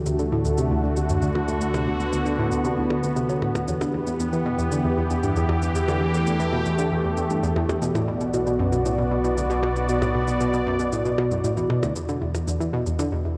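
A bright, up-front analog pluck carries the riff in this ambient, sequencer-driven space music: a round, detuned blend of sawtooth, pulse and triangle waves with a noise layer and wave-folding, snapping in with a fast attack and decaying through chorus and analog delay. A filter sweep moves across a synth arpeggio sound from 0.0 to 12.0 seconds. Beside it, an airy, sweeping resonant pad holds sustained chords with a slow attack, filter swell and long release, its evolving sawtooth tone thickened by chorus. Deep in the background, a warm analog drone supplies the bass, its sawtooth and pulse-width-modulated tone shifting slowly beneath the harmony. Electronic shaker and percussion blips echo through analog delay while the music, at 116 BPM in a straight 4/4 in E minor, moves from D to Em to Bm and settles back on Em at 12.0 seconds. A drenched cathedral reverb places this expansive, mysterious passage, cut from a longer piece, in a vast, echoing space.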